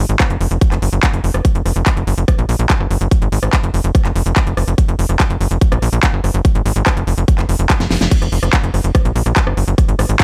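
Psychedelic trance at 144 BPM in F phrygian, hypnotic and alien, where a nasal, sawtooth-edged sequencer bass plucks tightly up front under a punchy, tape-warm electronic kick and a layered dance kit of huge snare, crisp hats, handclaps, rim clicks and crash, all in dark digital ambience, with a drum fill at 7.8 seconds leading into the drop at 8.1 seconds in this cut from a longer piece.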